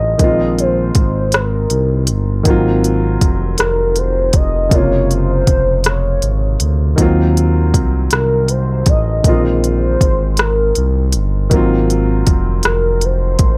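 A slow, straight six-eight pulse carries this sultry, late-night R&B piece, with a soft-kicked electronic drum kit of smooth hi-hats and rim clicks entering at 0.2 seconds. A velvety, chorused synth lead with tape echo carries the melody over an intimate grand piano with audible action noise, while a detuned synth bass glides beneath with portamento. Extended chords such as Bb9sus4, Ab13 and Gbmaj9#11 unfold in light reverb.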